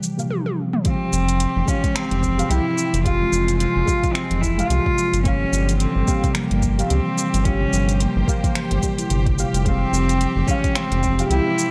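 Meditative and mystical, this organic downtempo excerpt in F harmonic minor moves at 109 BPM with a swung 16th-note feel, as a pure, ringing steel tongue drum plays arpeggios through digital delay over background sustained chords from a biting symphonic string section and a soft, dark chord stab with chorus, phaser and sidechain pumping, while an overdriven electronic kit of finger snaps, smooth hi-hat, shaker and toms plays a fill before a soft overdriven kick enters at 0.9 seconds, a round analog bass arrives up front at 1.1 seconds, and a reedy, gut-string cello carries the melody from 0.8 seconds over chords moving from Gm7 to Fmadd9 and Gm7b5, all set in light reverb and digital ambience.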